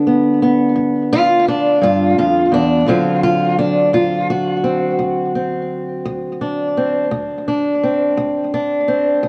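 A cassette-tape sound with small-room ambience, a moderate plate reverb and a heavy wash of echo frames this brief cut from a longer acoustic country blues piece in D mixolydian, tuned to A4 = 436 Hz. A single fingerpicked, ladder-braced acoustic guitar sits up front with a woody, boxy tone, old strings and its own tape echo, moving from G7 to D7 at 2.9 seconds. The feel is laid-back yet rollicking, in a straight 12/8 at 57 BPM counted in dotted quarters.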